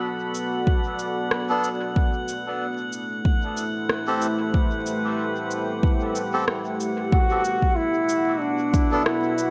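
A distant, lightly vibratoed trombone enters at 7.1 seconds with a dub-echoed melody over this hazy, meditative ambient dub fragment, where a deep, moody, detuned pad holds slow-attack chords and glassy harmonics drift above, beneath a deep kick, dub-echoed electronic cabasa and rim click, and reedy, nasal melodica stabs, all wrapped in a moderate echo chamber and vinyl crackle.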